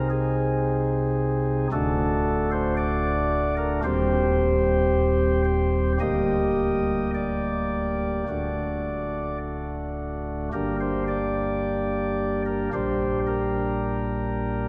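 Grave and solemn, this 14.7-second fragment of a classical chorale-style piece in G minor unfolds at a rubato 52-57 BPM in 4/4, with a solo pipe organ on soft flute stops, close and up front with baroque voicing and an audible chiff, moving through chords such as Ab/C, D, Cm/Eb and Gm/D before settling on Gm and Gm/Bb, all bathed in a wet church reverb within a dark, warm production.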